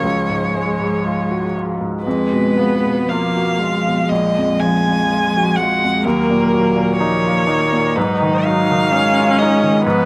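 In a slow 4/4 that breathes with rubato, somewhere between 56 and 66 BPM, this lyrical, tender romantic movement for piano quartet unfolds as a short passage cut from a longer piece. A single bowed violin carries the melody up front, its rich tone smooth and even with vibrato, moving within the range from A#4 to G#5. Beneath it, a solo cello sings an expressive second line from a more distant position, colouring its low phrases with vibrato and portamento, while a focused viola fills in the inner accompaniment, also set further back. The grand piano sits up front with a bright, polished, brilliant sound and long sustain, spanning from deep bass notes to the middle register. The harmony moves through C#, Fdim, A#5, D#m and G#5 in roughly two-second steps, heard through close, detailed microphones and a moderate recital hall reverb of 1.6 seconds.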